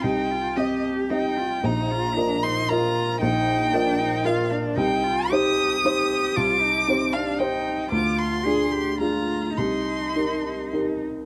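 A rubato passage in 3/4 drifts between 102 and 118 BPM in this melancholic, reflective neoclassical excerpt for piano and strings in C minor, tuned to A4 = 441 Hz. A felt-muted upright piano sits up front as the accompaniment, its soft, mellow, vintage tone spanning Bb1 to Eb5 with an intimate closeness. Above it a single bowed violin carries the melody from Eb5 to Eb6, singing with vibrato and expressive portamento. A rich solo cello plays a second line between C4 and Ab4, also bowed with vibrato, sliding gently and entering notes with a soft attack. The harmony moves from Cm through Bbsus4, back to Cm, then to Ddim before resting on Cm7, all within a light reverb. The violin stops at 10.7 seconds and the cello at 11.0, leaving the piano alone until the fragment is cut off at 11.3 seconds.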